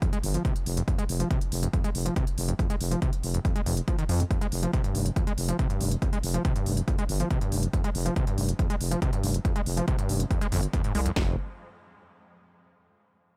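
Driving peak-time techno at 140 BPM in F minor, this short cut from a longer piece has a driving, industrial mood built over a single F5 power chord. A punchy kick and cracking snare sit up front, joined by smooth electronic hi-hats, both given a small-room re-recorded character. Underneath, a thick, growling FM bass enters at 0.2 seconds with sustained, fast-attack tones, pumping against the kick. On top, an overdriven acid bass riff squelches with gritty, resonant sawtooth tone and filter sweeps, its distortion and dub echo adding grit and trails while it too pumps with the beat. A barely audible downlifter appears only in the opening second, and the mix stays dry and close, with little reverb, before the harmony drops away at 11.2 seconds.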